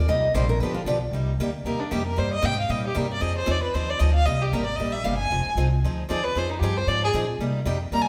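Swinging and virtuosic, this brief cut from a longer jazz manouche performance races along at 229 BPM in C minor with a gentle swing on the eighth notes. It opens with a short solo from a picked concert-style steel-string acoustic guitar, which plays its line up front for under a second. Beneath it, an upright bass with gut strings is plucked for a woody, dark and thumpy foundation, while a second picked steel-string guitar, a bright, boxy parlour instrument, provides the accompaniment. At 1.7 seconds a single bowed violin takes over the lead with a warm, expressive tone, a soft attack, vibrato and portamento sliding between notes. The harmony moves between Cm7, G7 and Fm7, and the band plays live together in one room, bathed in a wet stone-room reverb.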